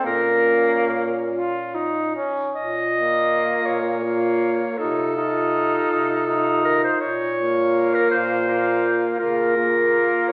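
Heard from further back in a reverberant recital hall with an AM-radio sound, this solemn, melancholic classical fragment for single-reed quartet moves in rubato 6/8 at 45-56 BPM in Bb minor, with a clear, present clarinet singing the melody up front, a warm, vintage tenor saxophone with vibrato carrying the accompaniment, an alto saxophone with light vibrato tracing a second line in the background from 0.1 s, and a mellow bass clarinet holding the bass as the harmony passes from Bb minor to F7 and back.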